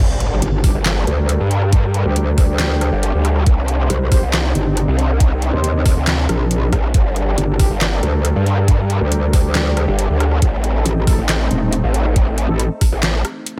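A half-time 4/4 pulse at 138 BPM drives this menacing, heavy wobble dubstep excerpt in G minor, built on a knocking, up-front electronic kick and a dubstep kit of deep snare, metallic hats, handclaps and rim clicks that enters at 0.2 seconds, all with little reverb. Two saturated, chorused basses dominate the drop: a growling, detuned growl bass with formant filtering and an FM-edged metallic wobble bass, while a very quiet electronic impact marks the opening 1.7 seconds. Behind them sit a lush supersaw pad with sidechain pumping and a low-pass filter, holding chords from Gmadd9 through Cmadd9 to Adim, and a dark brass ensemble whose smooth, lightly vibrato stabs carry dub echo.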